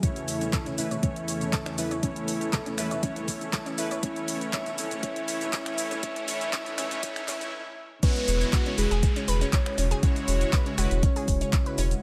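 A straight 4/4 pulse at 120 BPM drives this expansive, uplifting progressive house passage in E major. An overdriven, knocking electronic kick sits up front, joined by an overdriven pop kit of hi-hat, shaker, handclaps, finger snaps and crash cymbal, while very quiet, distant bongos and congas ring until 7.5 s. Over an A/E chord, a dark, full-bodied octave-layered lead carries the melody with chorus, phaser, vibrato and delay, a smooth detuned pad holds sustained chords in the background, an analog pluck spins arpeggios, and a soft supersaw adds stabs, with the lead, pluck and supersaw all under filter sweeps through the build-up as a very quiet riser and downlifter enter at 4.6 s; after a brief stop, the drop lands at 8.0 s on E69, and a deep, sustained analog bass on E1 joins at 8.3 s, all set in light digital reverb.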